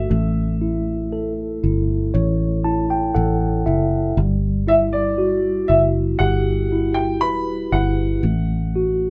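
Pop ballad at a slow 59 BPM in 4/4, tender and heartfelt, where a warm baby grand piano carries the high melody over a mellow, clean tine electric piano accompaniment that adds a fill from 2.1 to 4.2 seconds, while a round, foam-muted fingered electric bass sits low and dark, all three up front in a small room with moderate reverb as the band plays live through A, Emadd9 and F#m in this short section cut from a longer piece.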